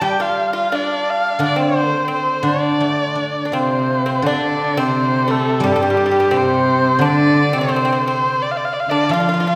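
In a loose, rubato 2/4, this wistful, tender passage of Chinese traditional chamber music, cut from a longer piece, sets a dark, woody erhu melody with vibrato and portamento up front over a dry, percussive fingerpicked pipa line and a ringing, silvery guzheng accompaniment, with a rich, smooth bowed cello joining at 3.5 s, heard in the wet reverb of a church or concert hall.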